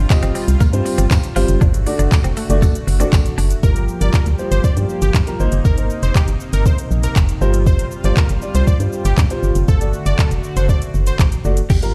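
Dance-pop with a driving, bittersweet mood, where an up-front smooth R&B drum kit with soft kick, metallic hats, handclaps, shaker and crash cymbal pushes a dark, hollow organ-like FM bass, a mellow baby grand piano and a shimmering chorused pulse-width pad, all three pumping to the sidechain, while a twangy twelve-string electric guitar riff and a jingly background tambourine open the cut until a punchy, catchy plucky unison lead with digital delay takes the melody at 3.6 seconds, all heard through a big sound system in a bare stone room.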